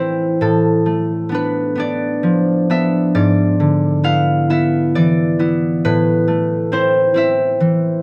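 In a rubato 6/8 at 44 BPM counted in dotted quarters, this mysterious, wistful classical piece in A minor, tuned to A4 = 442 Hz, features a solo concert harp, fingerpicked, ringing and up front in light reverb, moving from Bm7b5/A at 0.4 s through E7/G# at 3.1 s to Am at 5.8 s.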